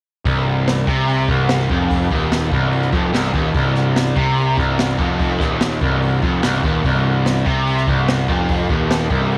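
A bright, overdriven electric guitar sits up front, playing a low picked riff between C2 and C3 over a Cmadd11 chord from 0.3 seconds. This short cut from a longer classic rock piece moves at 146 BPM in a straight 4/4 and feels sunny and confident, with its tuning set to A4 = 442 Hz. A second, sludgy and dark distorted guitar also plays a riff in the same register. Underneath, a picked electric bass with punchy fuzz and overdrive holds the low end in the background, its tone direct and amped. A jazz drum kit played with brushes adds hi-hat, a boomy kick and a high-tuned snare, all heard in a studio room, and every part plays together through to 9.4 seconds. Light reverb and small room ambience frame the sound.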